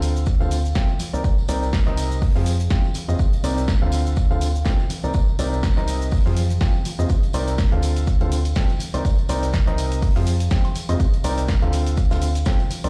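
Soulful and energetic, this piano house excerpt at 123 BPM in C minor has a swung groove cycling through Dm7, Cm9 and Fm, carried by a woody, slightly detuned upright piano riff with digital delay and sidechain pumping, a hollow, organ-like FM bass that pumps too, a punchy analog kick up front from 0.3 s, a punchy analog drum machine with hi-hat, shaker, snare and woodblock, a very quiet dry cocktail kit with a high-tuned snare, and vintage, band-limited tambourine and congas in the background, all heard as if played on a big sound system in a bare stone room.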